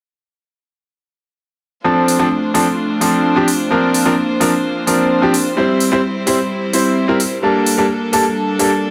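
A straight 4/4 pulse at 129 BPM, carried from 2.1 seconds by crisp, layered electronic hi-hats re-recorded in a small room, drives this anthemic, powerful festival progressive house excerpt in D minor, where an up-front, brilliant grand piano with audible action noise and dub echo plays accompaniment from 1.8 seconds over close, earthy bowed chamber strings holding sustained chords through Dm7, Bbadd9, C and Gmadd9 until 8.9 seconds, inside a wet recital-hall reverb.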